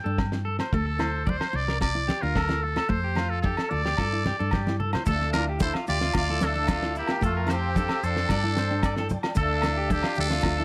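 Highlife guitar band music in D minor at 111 BPM, warm and danceable, in a straight 4/4 that moves through suspended and added-ninth chords. A trumpet with a metal mute carries the melody up front, buzzy and raspy with scooped, growling notes and a light vibrato. Beneath it an electric guitar at the edge of break-up plays twangy arpeggios, while a picked steel-string dreadnought acoustic guitar adds full-bodied accompaniment in the background. A round, dark hollow-body short-scale bass anchors the low end alongside a dry 70s drum kit with a fat snare and tight kick, and ringing agogo bells and damped, thick-skinned congas sit back in the mix. After a drum fill from 4.7 to 5.1 seconds, a vintage-sounding second trumpet with vibrato joins on a lower second line, a smooth tonewheel organ with chorus vibrato, key click and a stopped rotary speaker holds chords in the background, and grainy maracas enter faintly. 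Light reverb gives the whole a gentle sense of space in this short excerpt.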